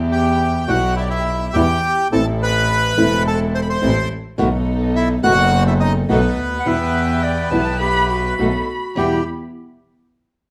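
A muted string section plays dark con sordino stabs in the background, veiled and distant, while a bowed double bass sits up front, clear and biting with a light vibrato. The bandoneon carries the melody almost at once, reedy and full, with a close-miked, dry tone. From 0.7 seconds a dark, thumb-plucked flamenco guitar adds acoustic accompaniment. This is a tense, passionate tango in E minor at 105 BPM in 4/4, played with a rubato feel over Em, Am and B7. At 6.6 seconds a distant solo violin enters with rich, expressive portamento, together with a warm clarinet in classical style, both adding second lines as this excerpt from a longer piece comes to its cut, all within a moderate large studio reverb.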